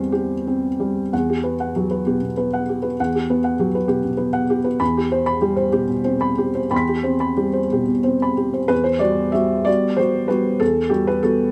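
A felt-muted upright piano opens alone on a C/E chord, its soft, boxy tone sitting up front with audible action noise, in this intimate, reflective neoclassical minimalist fragment in E minor. Moving in a rubato 6/8 at roughly 58-67 BPM, the solo piano spans E2 to B6, settling on Emadd9 at 1.1 seconds, shifting to Cmaj7/E at 4.8 seconds and returning to Emadd9 at 8.7 seconds. Close, detailed microphones and light reverb keep the mellow sound near and private across the 11.5-second excerpt.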